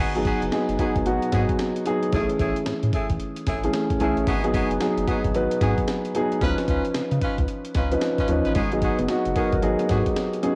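A round, deep analog bass and a warm horn section playing jazz-style ensemble stabs open this punchy, bouncy new jack swing excerpt, set at 112 BPM in G# dorian with a swung sixteenth-note feel. A dark grand piano, intimate and up front with audible action noise, fills in the accompaniment, and a gritty sampler-style breakbeat kit joins it, its thumpy kick, medium-tuned snare and hi-hat sounding compressed, pitched up and tape-colored. The bass has a nasal, square-wave edge with a moving notch and a fast attack that decays. Over G#m7, Amaj7 and C#9 harmony, a clean, fingered electric guitar arrives at 8.6 seconds with a mellow riff in the background, treated with lush chorus. The whole cut has the light reverb and digital ambience of a home recording on cassette.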